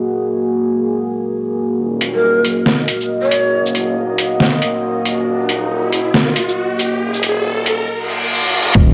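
A moody, chorused ambient pad opens this heavy, meditative deep dubstep excerpt in Eb minor at 138 BPM, its detuned sawtooth chords sitting up front in a half-time, swung feel. A rumbling, beating saw bass joins in the background at 1.8 seconds, followed closely by muffled, pitched-down trip hop drums with overdriven hi-hat, shaker and snare, while a breathy bamboo shakuhachi drifts through a brief dub-echoed phrase with vibrato and chiff. From 4.3 seconds a riser, then a reverse cymbal at 7.9 seconds, build the tension toward a punchy, layered electronic kick and impact at 8.8 seconds, all coloured by cassette grit and a spring-reverb home-recording sound.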